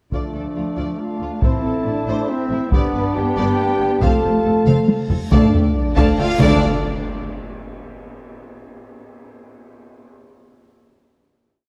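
Close, dry taiko strokes drive this heroic, epic orchestral film cue in D dorian at 139 BPM in 3/4, pounding out a big-drum ostinato beneath a dark, expressive cello counter-melody and a rich double bass section doubling the bass line, while violins carry the tune at the octave over lush viola ostinatos, distant French horn chords, punchy vintage trumpet stabs and soft, round timpani strokes. The theme moves through Dm, Am, G and F until a drum fill leads into a short outro at 5.3 s, where a reverse cymbal, a huge bright swell and low impacts crash in. A final hit rings out in the dark scoring-stage reverb, with the last effects ending by 7.7 s.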